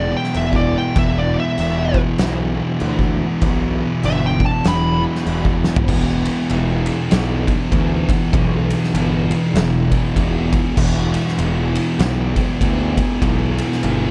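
Stoner and doom metal with a hypnotic, ominous swing, cut from a longer piece. A dark, compressed fuzz lead guitar carries a short solo melody with delay until 5.0 s, while two thick fuzz guitars grind out the riff in the background and a growly, overdriven picked bass sits up front. An oversized, low-tuned acoustic kit, gritty and saturated, with a fat snare, punchy kick and dark cymbals, pumps in a big room, and it plays a fill at 5.6 s into the next section of this dry, dark production.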